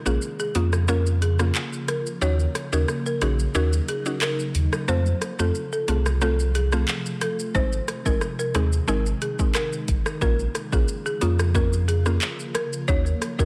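A light reverb and digital ambience frame this short dancehall clip, which is cut from a longer piece and carries a tough, bouncy mood. A deep, sine-toned sub bass with an added octave sits up front, full and mellow, while an electronic afro-pop drum kit with a deep kick, metallic hats, handclaps, rim click and shaker drives the groove from close range. Over this, a dry, rustic folk marimba struck with medium hard mallets carries the melody, its woody hardwood tone trailed by delay. A round, detuned FM synth pluck with a fast attack and short decay adds chorused accompaniment beneath, and an ethereal, airy pad holds sustained chords in the background, shimmering through ensemble chorus, phaser and sidechain pumping. The harmony moves from Bbm through Ebm7 and F to Ab before returning, and the opening 7.5 seconds form a break.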